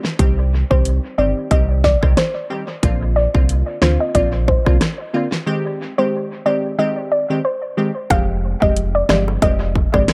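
Dancehall at 91 BPM in F dorian with a hypnotic, sultry mood, this excerpt sets a punchy, up-front electronic drum kit with fat snare, metallic hats, rim click and dub echo against a deep sine sub bass with octave, crisp detuned wavetable chord stabs pumping from the sidechain over Cm, Bbadd9 and Abmaj7, and a dark, round pluck melody high in the register with chorus and dub echo, all in an echo-heavy digital ambience, before a break at 5.5 seconds gives way at 8.1 seconds to an Fmadd9 section where tight, high-tuned bongos enter very quietly.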